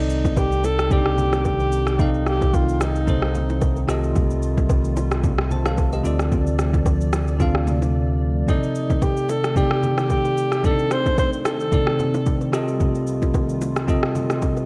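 A worn, warbling cassette-tape character with drifting pitch and light reverb colors this hypnotic, deep amapiano passage, cut from a longer piece, moving at 111 BPM in 4/4 with a swung sixteenth-note feel in C dorian. Up front, a bell-like tine electric piano plays bright, clean accompaniment throughout, while a breathy alto saxophone with light vibrato and a smooth top carries a pop-style solo melody. A round sine sub bass anchors the low end until it stops at 8.4 seconds, and a smooth, soft-kicked R&B drum kit of kick, rim click and shaker carries vintage 12-bit sampler grit and a large-room sheen. In the background, a hollow, dark, flute-like pad with ensemble chorus sustains the chords, and close, dry bongos and congas ring softly under the hands. The harmony circles from Cm69 through F9/C and Dm7, and after a brief silence at 7.9 seconds the saxophone returns at 8.5 seconds over Cm69.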